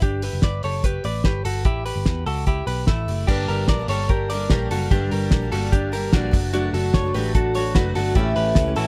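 Jangly indie pop at 147 BPM with a youthful, nostalgic mood, this short excerpt opens with a bright, compressed clean electric guitar playing delayed arpeggios over a foam-muted picked bass and a dry, cloth-damped thuddy drum kit with a fat snare and dark cymbals, before a shimmering octave-doubled twelve-string acoustic guitar with lush chorus joins at 3.3 seconds and soft, mellow electric-piano-like synth keys enter at 6.5 seconds, all in a close, nearly reverb-free sound moving from Gmaj7 and A5 to Gm, D/F# and A.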